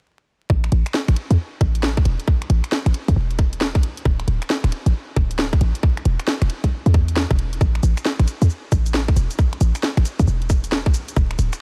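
Over a bed of vinyl crackle, this bouncy, sunny two-step UK garage fragment at 135 BPM kicks in at 0.5 seconds with a tight, overdriven electronic kick up front beside a punchy, sine-based short 808-style bass with a fast attack, noise layer and decaying tail, while a layered garage kit of finger snaps, hi-hat, shaker and a cracking, overdriven snare rides lower in the mix on swung sixteenths, both drum parts dressed in studio reverb.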